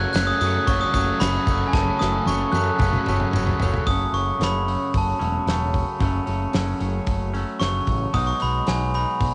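A straight 4/4 pulse at 112 BPM drives this restless, bittersweet indie rock fragment in F# dorian, with a loose, small-room drum kit (fat snare, punchy kick, dark cymbals) rolling through a fill from 1.7 seconds while a close, jingly tambourine sits in the background and a soft, mellow rubber-mallet glockenspiel line hovers barely audible during the opening stretch. Up front, a sparkling hard-mallet glockenspiel carries the melody over a clean, twangy guitar riff and a growling, round overdriven bass, while a second, chorus-and-delay-treated overdriven guitar riff drops out at 3.9 seconds as the music moves into a new section. The harmony holds on F#m until shifting to B6 at 8.1 seconds, and the dry home-cassette sound gives the whole fragment a dull, lo-fi haze.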